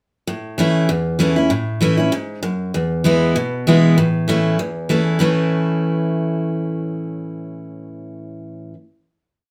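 A brisk, driving 4/4 pulse at 195 BPM carries a light swing on the eighth notes, giving this short bluegrass piece in A major a joyful, forward-leaning bounce. A single picked steel-string acoustic guitar plays solo from 0.3 to 8.8 seconds, its dreadnought body sounding bright and full-bodied, with a touch of finger squeak along the strings. The playing alternates bass notes with strums and slips in bass runs, moving from A to E and back to A. The phrase settles onto a final chord at 5.2 seconds and lets it ring. The guitar sits up front in a moderate studio reverb that adds a modest sense of room.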